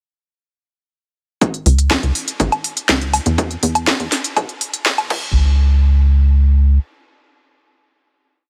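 Cinematic and hypnotic, this short melodic techno piece at 122 BPM opens at 1.4 seconds with a punchy four-on-the-floor electronic kick and a programmed kit of smooth hi-hats, a cracking snare, low woodblock and crash, while a tight, saturated sequencer bass in a dotted rhythm, built from sawtooth and square waves with ring modulation and a plucky filtered attack, pumps against the kick from 1.7 seconds, all dry and up front through a filter-swept build that gives way to a final hit at 5.3 seconds.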